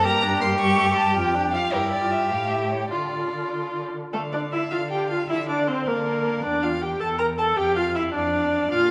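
Lively and graceful, this brief excerpt of a quick classical-period string quartet movement in a rubato 6/8 sets a woody, distant first violin on the melody above a rich, focused second violin line up front, a smooth, even viola accompaniment and an expressive cello bass with portamento, each bowed with vibrato in the reverberant air of a recital hall.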